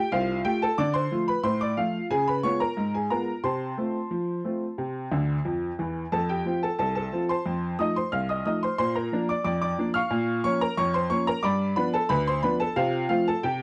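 Ragtime piano in F major, this playful, jaunty passage moves at 90 BPM in a straight 2/4, cut from a longer piece and lasting 13.6 seconds. A single upright piano carries everything from start to finish, spanning C2 to F6 with a worn, woody, slightly detuned character and a long sustain. The harmony travels from F through Dm and a colorful Db7, settles on C, then builds through F7 and Bb to a darker Bbm and G7 before resting on F/C. A brief piano fill between 5.1 and 6.1 seconds stands out as the phrase turns back toward F. The sound is dry and close, in the manner of a 1970s studio, with the piano placed up front and a touch of light reverb around it.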